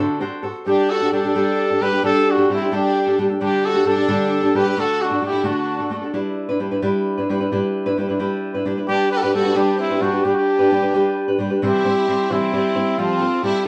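Romantic and festive, this mariachi-style Mexican folk piece moves in 6/8 metre and is cut from a longer performance. A clear, classical-style trumpet carries the melody up front, its soft attack and light vibrato giving the line a tender, singing quality. Beneath it, a studio violin section plays a smooth, even second line with bowed vibrato, sitting lower in the mix. A warm, fingerpicked nylon-string guitar, also up front, supplies classical-style accompaniment for the whole passage and holds the stage alone when the trumpet and violins drop out between 6.0 and 8.9 seconds. The band plays live together in one room, wrapped in a wet studio ambience, and the harmony shifts from suspended chords toward C and a closing Fadd9 as a new section begins at 11.6 seconds.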